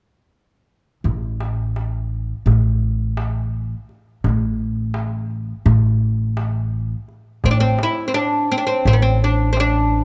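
In a straight 9/8 at 169 BPM counted in eighths, this melancholic, longing fragment of a Turkish makam ensemble piece opens with a dark, thumpy pizzicato upright bass on gut strings at 1.0 s, joined at 1.1 s by a crisp metal-shelled darbuka played with soft hands and sounding distant, as in a large room, before a mellow, woody fretless oud with double strings enters up front at 7.5 s, all captured by close, detailed microphones with light reverb.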